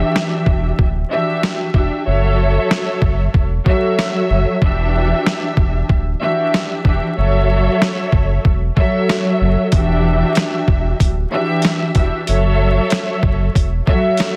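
A dark, lush string section opens this reflective boom-bap fragment, its bowed, woody ensemble tone carrying vibrato through a cassette-tape haze over alternating Em7 and F#m7 chords, while a deep, sustained sine-and-triangle sub bass with an added octave sits up front beneath it. At 0.2 seconds a gritty, pitched-down sampler-style kit arrives with a thumpy kick, medium-tuned snare, hi-hat and rim click, swung and compressed. The dry mix is densely limited and dusted with vinyl crackle.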